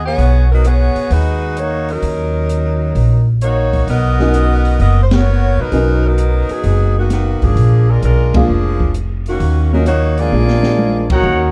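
A woody, plucked upright bass sits up front as a brassy, swinging big band piece in Eb minor gets underway at 130 BPM, joined at once by a clear, vibrato-rich saxophone section carrying the melody over a dark, small-room drum kit with a boomy kick and high-tuned snare. An intimate baby grand piano with audible action noise comps from 4.2 seconds through a progression moving from Abm7 to Bmaj7 and Bb7, while full-band accents punctuate the phrases and a drum fill leads toward the turnaround. A mellow trombone section slips in at 10.2 seconds, and a warm, soft-attack trumpet section takes up the melody at 11.1 seconds just as this fragment of a longer piece breaks off.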